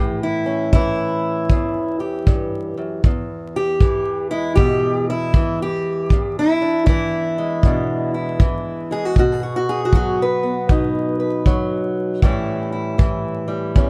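A laid-back, rollicking swing in four sets the pace for this short cut from a longer acoustic country blues piece, moving through A7, E7 and B before returning to A7. A fingerpicked archtop guitar carries the melody up front with a bright, boxy tone, fresh strings and audible finger squeak, and a tight, natural kick drum with brushes joins at 0.7 seconds in a small room. The sound is close and detailed with little reverb, and a layer of vinyl crackle runs through it.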